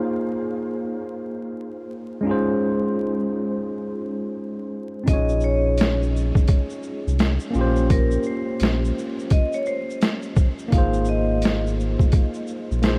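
A clean tine electric piano, filtered and cassette-softened, opens this melancholic, hazy lo-fi hip hop fragment alone at 85 BPM in Bb dorian, moving from Ab6 to Dbmaj7/Ab, until at 5.1 seconds a gritty, overdriven boom bap sampler-style kit with thumpy kick, high-tuned snare, hi-hat and shaker drops in up front beside a deep sine sub bass with octave, while a dark, ringing vibraphone played with medium hard mallets carries the melody through analog delay until 11.6 seconds, the dreamy mix soaked in huge ambient reverb and vinyl crackle.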